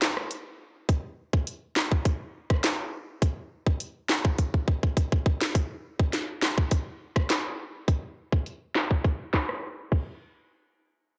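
Dancehall in a straight 4/4 with a tough, sultry mood, this short cut features only an electronic island pop drum kit of tight kick, sharp snare, warm hi-hat, rim click, handclaps and crash cymbal, placed up front in a dry, gritty sound with light reverb, a drum fill at 4.4 seconds leading into a filter sweep from 5.5 seconds and a brief break at 9.6 seconds.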